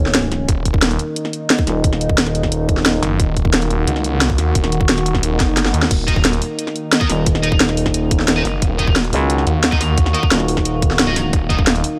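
A sweeping, resonant pad of detuned sustained chords with chorus and phaser opens this mechanical, futuristic excerpt of dark technical drum and bass, where a thick FM bass growls beneath a tight layered kick and a cracking, up-front kit, a snarling distorted saw bass takes over from 3.0 seconds, a very quiet swell and zap accompanies a drum fill as the kick briefly drops out, and bright, high-gain, double-tracked guitar stabs with 12-bit grit and delay enter at 6.1 seconds, all in light reverb.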